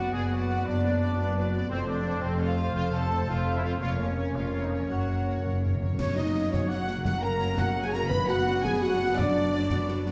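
Heard from further back in a reverberant recital hall, this triumphant, soaring adventure film cue in F# major moves at 114 BPM in a straight 12/8. Lush, vibrato-rich violins carry the melody and a second line, while a small, airy flute group, a dark clarinet and a smooth-topped oboe, which drops out at 5.8 seconds, weave further lines over quiet violas, ringing fingerpicked harp arpeggios, distant horn chords and clear trumpet stabs, all grounded by rich cellos and double basses. A crisp, articulate timpani fill at 4.9 seconds leads into concert snare, bass drum and bright clashing cymbals from 6.0 seconds.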